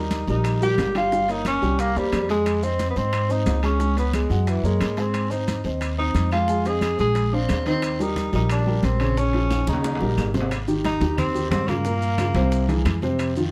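A mellow tenor saxophone carries the melody up front in this sunny, danceable Afro-Cuban jazz excerpt, its subtoned, scooped notes sounding distant and roomy under a plate reverb. A baby grand piano supplies intimate, natural accompaniment with audible action noise, while a pizzicato upright bass on gut strings sits equally forward, dark and thumpy. The percussion bed sits low in the mix: very quiet bright congas struck with hard hands, very quiet round low-tuned bongos, and very quiet woody claves heard from a large room, with ringing metal-shell timbales of a vintage, band-limited tone, a raspy guiro and grainy maracas in the background. A drum fill at 9.5 seconds leads into a new section at 10.5 seconds, where the harmony shifts and rich chords such as a minor seventh flat five and an augmented seventh colour the close. The saxophone stops at 13.0 seconds as the rest of the band plays on, all within a dark production and a moderate studio ambience.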